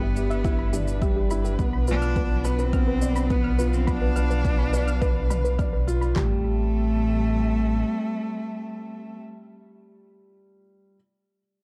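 A deep, rumbling detuned saw bass sits up front in this cinematic, hypnotic piano and strings electronica, its beating sawtooth tone pumping against the sidechain at 105 BPM in a straight 4/4 in A minor. Above it, a bright, biting solo cello carries the melody with vibrato and intensity, though it sounds distant, while a dark string quartet holds expressive bowed chords with portamento and the same pumping motion. A mellow, woody upright piano with a vintage character repeats a riff, and a soft, round, nasal pluck plays arpeggios in the background, colored by chorus and tape echo. Punchy deep house drums with handclaps, kick and toms, layered with an electronic shaker, are overdriven and set in studio ambience during the opening drop, as the harmony moves from Em7/G to Bdim and then settles on Am7 at 6.2 seconds. The production is dark and dry, and from 9.2 seconds the piano plays alone until this excerpt ends at 11.0 seconds.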